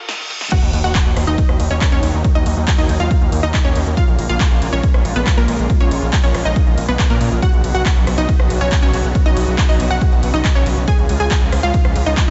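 Uplifting trance in Eb minor at 139 BPM, bittersweet and driving, this excerpt opens with a brief break of reverse cymbal plus a drum fill before the drop at 0.5 seconds lands with a background impact and brings a dry, punchy analog kick up front, an overdriven big-room kit with punchy snare, crisp hats, claps, ride, rim clicks and crash, a gritty, nasal sawtooth bass with oscillator sync and saturation pumping to the sidechain, a lush detuned unison pluck melody with a noise layer, filter sweep and tape echo, and a slow-attack supersaw pad with ensemble chorus sustaining Ebm, Bbm7, Bsus2 and Db chords in the background, all under light reverb and a high-pass filter capping the top at 7.9 kHz.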